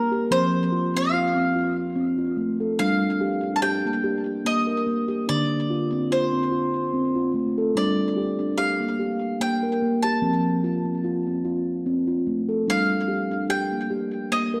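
A dark, warm production sits in a small room with a wet echo chamber reverb, giving this short cut from a longer piece a gentle, enclosed glow. It is meditative world music built on tuned percussion, moving in an unhurried three-beat lilt with a light swing. A steel tongue drum, struck with soft rubber mallets, carries arpeggios through the whole 14.6 seconds, its round, pure, ringing tone mellow and up front, trailed by tape echo. Above it, a bowl-back mandolin plays the melody throughout, its picked double strings bright and acoustic, sitting a little lower in level and likewise coloured by tape echo. The harmony drifts between minor and major chords, settling back on G minor at 12.7 seconds, which keeps the mood calm and inward.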